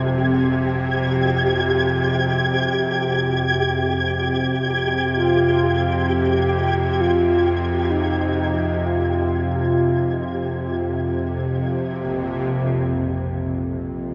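In free time, this desolate, cavernous dark ambient drone in F minor rests on a tense, detuned, string-like drone with vibrato and a filter sweep, set up front with a grainy, flickering texture that stops at 12.5 seconds, while a mellow, warbling, horn-like synth lead with chorus and diffuse delay carries the melody from 5.1 to 11.6 seconds and very quiet bronze carillon bells ring airy arpeggios at the opening and close, the whole piece sitting in a long, wet cathedral reverb with a dull top end.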